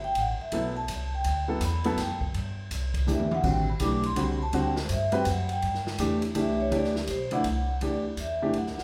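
Vibraphone and upright bass open this short modal jazz passage together, with the drums arriving at 0.2 seconds and the piano at 0.5 seconds, settling into an open, hypnotic swing in 3/4 at 165 BPM in D mixolydian. The vibraphone, struck with medium mallets, carries a solo melody that rings with a metallic shimmer and a slow motor vibrato. Beneath it the pizzicato upright bass sounds woody and thumpy on gut strings, while the baby grand piano sits up front with a natural, short-sustained accompaniment. The acoustic kit, somewhat lower in the mix, brings dark cymbals, a medium-tuned snare and a boomy kick, with a brief drum fill around 3.1 seconds. The harmony rests on a D9sus4 chord before moving to Dsus4 as the vibraphone solo ends at 7.8 seconds, and the whole band plays live in one large studio room with a moderate reverb.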